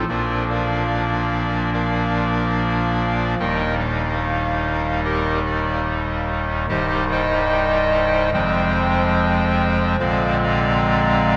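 This is a classical, chorale-style piece for pipe organ in Eb major, serene and majestic in mood, moving at 73 BPM in 4/4 with a flexible, rubato feel. A single chamber organ plays the whole excerpt alone from 0.0 to 11.4 s, using a clarinet reed solo stop with a hollow tone, a chiff at the start of notes and a tremulant. Its chamber voicing sits up front, covering a range from C1 up to Bb5. The harmony begins on Bb, settles on Eb at 3.4 s, passes through Cm and Fm, and closes on a Bb9 chord at 10.0 s. A wet cathedral reverb with a long decay surrounds the organ, and the instrument is tuned to A4 = 439 Hz.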